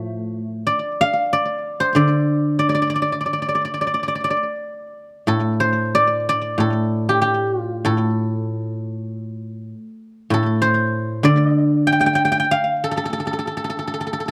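A solo guzheng carries this short passage from a longer Chinese traditional piece, its silvery, ringing tone placed up front and touched by a slapback echo. The playing is rubato in 4/4, with the pulse drifting between 82 and 100 BPM, and the music sits in a D yu mode, spanning from A2 up to G5. The mood is longing and contemplative, the fingerpicked strings unfolding in an opening section before a new section begins at 5.3 seconds and carries through to 14.3 seconds. The sound is dry and close, in the manner of a 1970s studio recording, so the instrument's acoustic body comes through with intimate clarity.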